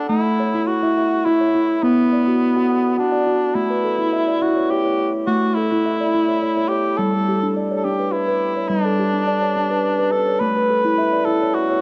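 Captured on home cassette in a small, wet-sounding room, this gentle, hypnotic excerpt of world meditative music in 3/4 sets a round, pure steel tongue drum, played with rubber mallets, in dark, smooth arpeggios up front beside a mellow, punchy cor anglais singing a classical-style solo melody with vibrato, both parts carrying tape echo over chords moving through A, Bm and G.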